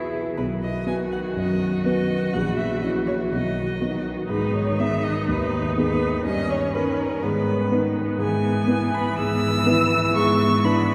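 This excerpt opens with piano, viola and cello together at the very start, and the violin enters with the melody at 0.4 seconds, setting a quick, graceful and cheerful classical-period movement for piano quartet in B major at 123 BPM in a straight 4/4. The concert grand sits up front, dark and mellow with deep bass and short sustain, giving the accompaniment a smooth, vintage character. The solo violin carries the tune, focused and up front with vibrato and a smooth top. The viola adds soft-attacked, expressive accompaniment with vibrato and portamento from a more distant spot, while the cello's focused second line stays in the background. The harmony moves from B through F#7/A# and G#m to a close on E7/G#, and the whole group is heard from further back in a cathedral whose long, wet reverb lasts about 5.0 seconds.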